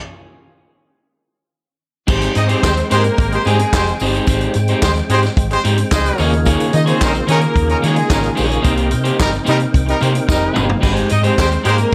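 Disco at 110 BPM in Ab major, this celebratory, danceable cut opens on a stop of silence before the rhythm section arrives at 2.1 seconds. A hollow-body short-scale electric bass, dark and round, anchors the groove while a vintage acoustic kit with a punchy kick, medium-tuned snare, handclaps, hi-hat, cymbals and toms drives it, joined by a jingly tambourine sitting very quietly in the back. An electric guitar at the edge of break-up adds picked, slightly gritty accompaniment, and a percussive tonewheel organ holds fat, lightly overdriven chords colored by chorus vibrato, key click and a slow rotary speaker. A lush, bowed studio string section carries a clear second line from 2.4 seconds, while a loose, roomy horn section punctuates with pop-style stabs from 2.6 seconds. The harmony moves from Abmaj7 through Eb7sus4 and Cm7 before a drum fill at 10.3 seconds leads back to Abmaj7, all set in light reverb and small room ambience.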